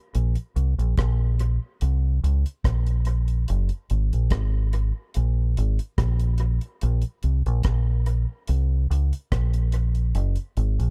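A straight 4/4 groove at 72 BPM comes from a deep reggae drum kit of hi-hat, tight kick and rim click, its dry, dark sound and rolled-off top set up front and fed through analog delay. A round, direct-and-amped fingered electric bass sits just as close, anchoring this laid-back, meditative roots reggae excerpt from 0.1 to 10.9 seconds. The mix is echo-heavy but carries little reverb.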